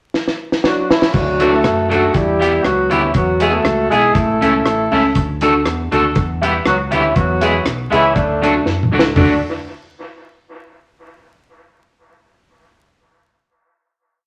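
Crackling vinyl and a wet studio reverb frame this joyful, upbeat ska piece in D major at 120 BPM, where a deep, dry reggae kit with a high-tuned snare, tight kick and dub echo plays a ska beat with side-stick backbeat and fills at 0.1 and 8.7 seconds, a dark, roomy horn section carries a motif-based melody in octaves and partly in thirds with light vibrato, a round, punchy fingered electric bass walks with slides from 1.1 seconds, and a twangy, slightly broken-up electric guitar with warbly pitch drift chops the off-beats alongside a woody upright piano before the closing chord.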